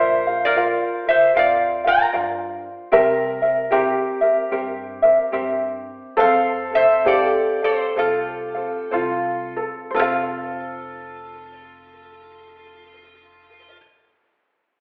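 A metal-body resonator slide guitar carries the melody from the first moment, bright and nasal up front, over a thumb-plucked ukulele, a felt-muted upright piano with audible action noise tracing a soft second line, and a woody, thumpy upright bass in this relaxed, dreamy Hawaiian piece in swung 4/4 at 57-76 BPM in F major. The tempo slows between 2.9 and 9.9 seconds as the harmony moves from Bb through C7 to F, before a new section begins at 9.9 seconds. Everything sits in a wet recital hall reverb, though the overall sound is narrowed to a telephone-like tone, and the passage is cut from a longer piece.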